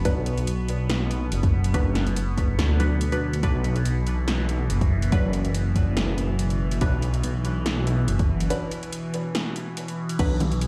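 Heavy and meditative, this short cut from a longer deep dubstep track moves with a swung, half-time feel in 4/4. A dark, detuned saw bass sits up front, its rumbling, beating low end saturated and sustained beneath a resonant drone whose moving overtones are treated with chorus, built-in reverb and phaser. Muted chord stabs with a filter sweep and short decay flicker through phaser and dub echo over a single B minor chord. An overdriven electronic kick and a layered deep house kit with punchy snare, metallic hats and crash cymbal drive the groove, both re-recorded in a large room. A break arrives at 8.5 seconds, and a brief touch of soft-handed bongos and congas surfaces in the background at 10.4 seconds. The whole piece carries the boom of a big sound system in a bare room, wrapped in large studio reverb.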